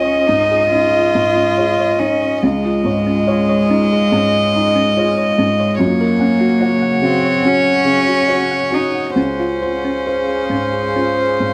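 Intimate and tender, this short excerpt from a longer neoclassical piece for piano and strings moves at a rubato 66-73 BPM in 4/4, settled in Db major with tuning slightly below standard pitch. A single violin carries the melody with a rich, floating sul tasto tone, sitting up front yet sounding faintly distant, while a lone cello plays a second line with light vibrato and an airy bow. A felt-muted upright piano provides soft, mellow accompaniment across a broad range beneath them. In the background, a warbling, lo-fi pad holds sustained, detuned chords with chorus and its own reverb, and a round, tine-like synth pluck resembling a thumb piano traces arpeggios through chorus and slapback echo. The harmony moves from Dbadd9 to Gb at 5.8 seconds and to Dbmaj7 at 9.2 seconds. Close, detailed microphones and light reverb keep the recording personal and near.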